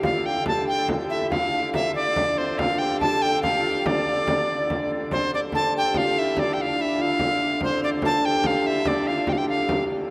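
A straight 6/8 pulse at 95 BPM, counted in dotted quarters, speeds up throughout this driving, ancient-sounding medieval dance in D minor, cut from a longer piece. A bright, reedy soprano recorder with a straight tone and tongued chiff carries the melody up front, while a distant, very quiet alto recorder with vibrato adds a second line until 4.9 s and a thumb-plucked concert harp rings beneath. A dark, nasal hurdy-gurdy holds a D drone in the background, a deep, saturated frame drum supplies the percussion, and a long, wet cathedral reverb surrounds the recording.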